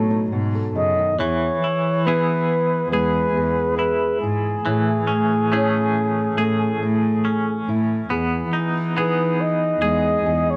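A breathy, whispered flugelhorn sings an intimate, jazz-inflected melody with vibrato and scooped notes over a dark, woody fingerpicked acoustic guitar on old strings and a bowed cello played sul tasto, pure and floating, in this tender, nostalgic folk passage cut from a longer piece. At 1.2 seconds a clean, twangy electric guitar joins with compressed, tremolo-shimmered arpeggios as the harmony moves from B7 to E, then Amaj7 and Emaj7. Close, detailed microphones and light reverb keep the mellow horn and soft-attacked cello up front.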